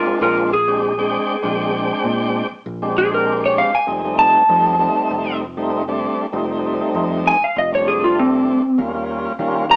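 Soulful and laid-back, this straight-eighth soul blues excerpt at 98 BPM features an up-front electric slide guitar taking a slightly broken-up, compressed solo from 0.0 to 9.8 seconds over a thick, lightly overdriven tonewheel organ turning through a slow rotary speaker and a dark, round fingered electric bass entering at 0.1 seconds, moving through Bb9, F9 and Eb9 chords with the feel of a band playing live in one room through a small speaker and moderate studio reverb.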